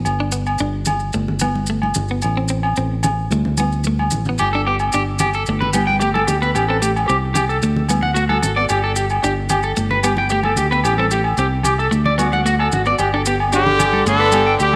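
A straight 4/4 groove at 112 BPM drives this danceable, warm highlife guitar band excerpt in G major, with a dark, round fingered electric bass up front, ringing vintage agogo bells, grainy close maracas and bright, damped congas sitting in the background from 0.9 seconds. A clean, compressed electric guitar plays picked accompaniment in a low-middle register as the harmony moves through Gadd9, Am and D5, then cycles through Gadd9, Am7 and D, returning to Gadd9. After a drum fill, a twangy electric guitar at the edge of break-up enters at 4.4 seconds with picked arpeggios soaked in tape echo, standing out front. Near the close, at 13.5 seconds, a clear, close-miked trumpet takes a jazz-style melody with light vibrato, joined by a raspy, growling tenor saxophone on a second line. A moderate plate reverb gives the band a glowing sense of space.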